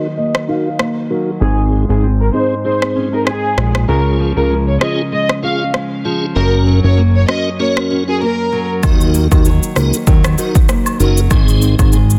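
Over a piping tonewheel organ with key click and slow rotary and fingerpicked nylon-string guitar arpeggios with finger squeak, both present from the start, a lush bowed violin section melody with delay enters at 0.2 s and plays until 8.7 s. A punchy, overdriven deep house drum kit of kick, rim click and shaker then drives this bouncy, sunny dancehall excerpt with a lightly swung feel, joined by a fat, detuned analog bass from 1.4 s. A filter sweep runs to 8.8 s, and background woodblock and cabasa enter for the closing section, all in a small room with a dense, heavily limited master.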